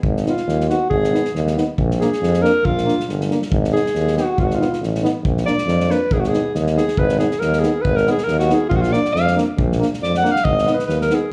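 Over a swung two-beat pulse from a natural small-room kit with a punchy kick and a medium-tuned snare and a clear, up-front tuba bass line, a mellow alto saxophone with light vibrato and a smooth top carries a restless, virtuosic solo in this Balkan brass band excerpt, while a euphonium and a close-miked, warm trombone hold classical-style accompaniment in the background under light reverb.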